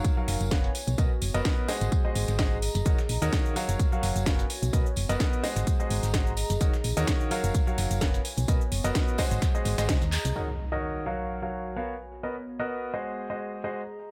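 An energetic, soulful piano house groove at 128 BPM opens with a clear, intimate concert grand riff, its action noise audible through sidechain pumping, low-pass filtering and tape echo, over a punchy, up-front electronic kick, a house kit with a cracking snare and metallic hats, a gritty sampler-style soul kit, background tambourine and a warbling, nostalgic pad, all circling Gbmaj7, Bmaj7, Ab7 and Ebm7. A round, dark FM bass joins at 0.3 seconds. The kick drops out at 10.0 seconds, and a drum fill and band accent follow at 10.1. The bass, tambourine and house kit then fall away, and an electronic impact lands at 10.4 seconds. Piano, pad and the soul kit carry the chords from there, with the piano stopping just before the cut.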